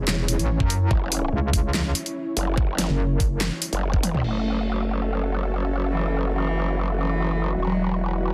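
A metallic, saturated wobble bass and a lush, detuned supersaw pad with sidechain pumping open this aggressive, chaotic heavy wobble dubstep excerpt in F# minor at 144 BPM in half-time. They are joined by an up-front drum kit with a huge snare and bright hats, a knocking kick, and a growling, formant-filtered growl bass from 0.9 seconds, before a drum fill at 4.0 seconds gives way to a dark, nasal, woody cello melody with vibrato and dub echo over a dense, heavily limited master with light reverb and a faint mains hum.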